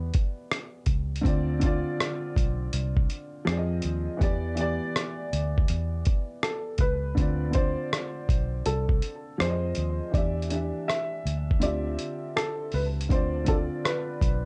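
Melancholic and nostalgic, this lo-fi hip hop piece at 81 BPM in D dorian rides a swung 16th feel over a compressed, sampler-style kit of thumpy kick, hi-hat and rim click with 12-bit grit, a round, punchy, foam-muted electric bass, and a worn, woody, slightly detuned upright piano up front on chords, joined at 6.4 s by a soft, intimate felt-muted upright piano melody with audible action noise, tape echo and plate reverb, while the kick drops out from 11.6 to 13.1 s.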